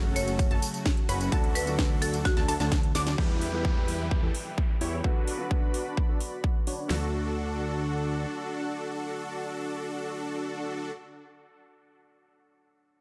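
Festival progressive house at 129 BPM in D major, this uplifting, triumphant excerpt opens straight into a drop. An overdriven big-room kit sits up front with a punchy kick and huge snare, layered with a house kit of cracking snare, metallic hats, ride and tambourine. A fat, tube-saturated analog bass and a dense, compressed supersaw riff with a sub octave and vibrato pump against the kick. A lush unison pluck plays high arpeggios, and a woody marimba struck with hard mallets adds a brief, bright melody in the background, both trailed by dub echo. Behind them, a clear baby grand piano and an airy, chorused and phased unison pad hold the chords from F#m to D. At 3.2 seconds the pluck stops and the harmony moves through Em and Bm as a filter sweep works on the supersaw and a faint downlifter sits in the background. Around 7.0 seconds the drums stop, and the pad, piano and supersaw carry the return to D in a light digital ambience.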